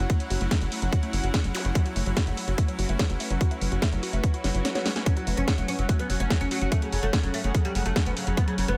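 Driving and intense, this psychedelic trance excerpt runs at 145 BPM in a straight 4/4, set in F# minor. A tight, up-front electronic kick and a punchy, dark sequencer bass pinned to F#1 with tube saturation form the core, while a techno kit adds a cracking snare and hats re-recorded in a large room, with a drum fill from 4.4 to 5.1 seconds. Beneath them, a woody wave-folded pluck plays a riff in the background through chorus and tape echo, an evolving, detuned wavetable pad holds bright sustained chords with ensemble chorus and its own reverb, and a muted string section adds a veiled, distant con sordino texture. The pad, pluck and strings all pump with the sidechain. Very quiet electronic zaps and swells flicker at 1.5 and 4.5 seconds, and at 5.1 seconds a plectrum-plucked fretless oud enters with a deep melody, colored by phaser and tape echo. The overall sound is close and dry, with little reverb on the mix as a whole.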